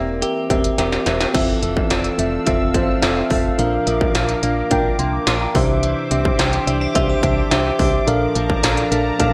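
A soft, chorused FM electric piano, a twangy, direct-recorded clean guitar riff with subtle chorus and delay, and a round, punchy FM bass open this romantic, uplifting 1980s-style pop piece, joined at 0.2 seconds by an up-front industrial drum kit with a distorted kick, clanging snare, smooth hi-hats, crash and tambourine under gated reverb, which plays a fill before a detuned, wave-folded analog pad enters with sustained chords at 1.3 seconds, the whole mix sitting in a lush hall reverb with bright digital production.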